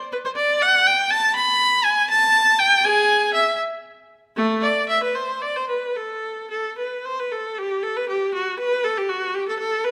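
A clear, intense viola carries this solemn, introspective baroque-style suite movement entirely on its own, sounding from 0.1 to 9.9 seconds. It is played by one performer, bowed with vibrato and placed up front, moving through a range from A3 to B5 in A minor. The music sits in 6/8 at roughly 73-82 BPM counted in dotted quarters, and the pulse bends freely with rubato. A moderate recital hall reverb with a 1.6-second decay gives the solo line a sense of space around it. The short passage is cut from a longer piece, with its opening material returning at 7.6 seconds.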